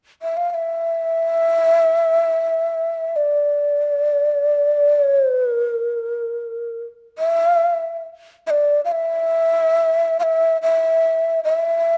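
A breathy, hollow shakuhachi plays alone in free time from 0.2 to 12.0 seconds, its crisp chiff and vibrato moving within a narrow span from D5 to F5 and turning to a new section at 7.2 seconds, giving this austere, still Japanese traditional excerpt, cut from a longer piece, an intimate, up-front presence through close, detailed microphones and light reverb.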